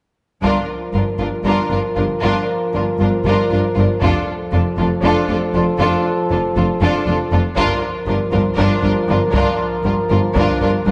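Relentless and epic, this cinematic orchestral build-up in G minor drives forward in 7/8 at 236 BPM in eighths, cycling through Gm7, Dm/F and back to Gm7 in a short section of a longer score. Distant, lush violins carry a smooth, even melody with vibrato, an expressive second violin line with portamento and a smooth viola part sit beneath, and cellos and double basses anchor the bass further in the background. Tight, warm French horns hold sustained chords while a taiko ensemble pounds with heavy sticks, all set in the wet reverb of a scoring stage.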